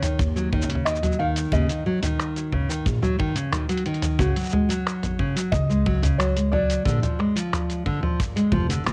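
The recording has the character of a home cassette recording with light reverb, and this short cut from a longer piece is folktronica at 90 BPM in a straight 4/4, sitting in Eb minor with a delicate, wistful mood. Up front, a full-bodied nylon-string guitar plays fingerpicked classical-style arpeggios, its finger squeaks audible and its tone colored by cassette tape and tape echo. A felt-muted upright piano carries the melody with a soft, mellow, intimate touch, trailed by tape echo. A compressed, pitched-down, muffled sampler-style kit of cabasa, finger snaps, hi-hat and toms also sits prominently, while from 0.2 seconds a tight, airy kick stays in the background and a woody, dark pizzicato upright bass with steel strings anchors the low end. The harmony moves from Ebm7 to Dbsus4 at 4.2 seconds, then settles on a rootless Bb7 at 6.9 seconds.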